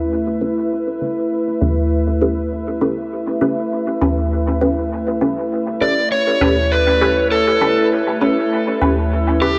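Ambient dub at 100 BPM in A mixolydian, spacious and hazy, where a warbling, nostalgic tape-like pad holds a sustained A9 chord with chorus and its own reverb, muted, deep filtered dub chord stabs carrying phaser, ensemble chorus and dub echo enter at 0.4 seconds, acoustic toms with a big-room sound and low-pass filtering come in up front at 1.6 seconds, and a dark, overdriven electric slide guitar melody with dub echo arrives at 5.8 seconds, all set in a huge ambient reverb in this short cut from a longer piece.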